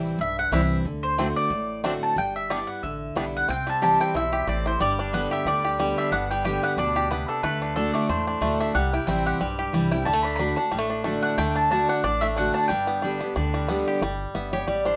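Driving and rustic, this bluegrass excerpt moves at a brisk 182 BPM in 4/4, with a light swing on the eighth notes and a home key of G major. A round, double-strung mandolin carries the melody up front, picking its line until it drops out at 13.8 seconds. Beside it, a bright, full-bodied dreadnought guitar plays picked accompaniment, while a twangy, percussive banjo, played with fingerpicks, joins at 0.5 seconds with arpeggios. Underneath, a woody, thumpy upright bass with gut strings plucks a dark low end. The harmony moves through C, D7 and G6 before settling into a C, G, D cycle, all set in a moderate studio reverb.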